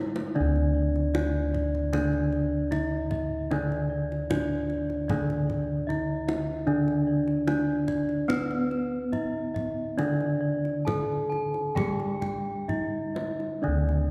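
A brief kendang fill opens the recording as the bronze metallophones and bossed gongs ring out together from the first instant. This is a serene, ceremonial passage of Javanese gamelan in D pelog barang, tuned to A4 = 438 Hz, moving at an unhurried 62-76 BPM in a straight 4/4. The lead metallophone carries the melody with a warm, wooden-mallet strike and a boxy tone. Beneath it, a second metallophone played with horn mallets gives the accompaniment a dark, shimmering quality from its paired tuning. The round, beating bossed gongs anchor the bass, and the deep kendang adds percussion with hard hands. From 0.4 seconds a higher metallophone adds mid-forward arpeggios, and the ensemble sits back in a lush concert-hall reverb until the cut at 14.1 seconds.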